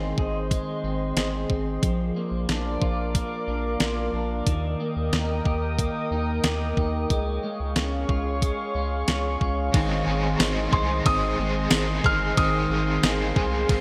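A bright, 1980s-style digital sheen and a lush hall reverb frame this short dream pop excerpt, which moves at 91 BPM in a straight 4/4 in Ab major, with a dreamy, blissful mood. A warbling, nostalgic pad with a lo-fi, detuned quality holds sustained chords through chorus and its own reverb, while an electric guitar at the edge of break-up picks compressed arpeggios through lush chorus and delay. A round, deep analog bass with a dark, nasal tone anchors the chords as they move from Ab through Bb, Eb and Db, and a clean 12-bit drum machine sits up front from 0.2 seconds, its thumpy kick, fat snare, hi-hat, ride and tambourine wrapped in gated reverb. At 9.7 seconds the arrangement opens into a new section as a crunchy, double-tracked overdriven guitar joins with tremolo and ensemble chorus. Shortly after, at 10.7 seconds, a felt-muted upright piano adds an intimate, soft high melody through delay, its thin felt and audible action noise giving it a close, hushed character.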